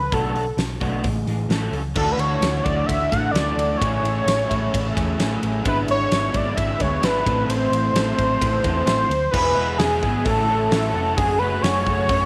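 Jangly and wistful, this indie rock excerpt in straight 4/4 is led by a bold, nasal, octave-doubled synth melody up front, its detuned sawtooth-and-triangle tone carrying vibrato, chorus and slapback echo. Beneath it, a twangy, slightly broken-up guitar through a small old amp sits in the background while a crunchy overdriven guitar with ensemble chorus and slapback adds grit, a round hollow-body short-scale bass anchors the low end, and a big rock kit brings a fat snare, punchy kick and bright cymbals. The changes drift through chords such as Bm7, Amaj7, Dadd9 and E7/G#, moving to a new section at 9.3 seconds and landing on F#madd9, all in a small room with light reverb.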